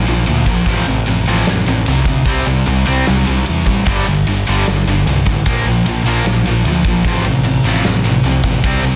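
Anthemic, powerful hard rock at 150 BPM in a straight 4/4, cut from a longer piece, where a biting overdriven guitar in the background and a bright, scooped high-gain guitar with distortion both drive the riff over Bb, F/A, C5, G5 and Bb5 chords, a growling, round, overdriven picked bass sits up front, and a huge arena drum kit with a punchy kick, medium-tuned snare, bright ride cymbal and big natural room sound plays a fill at 3.7 seconds, all in a dense, heavily limited modern master.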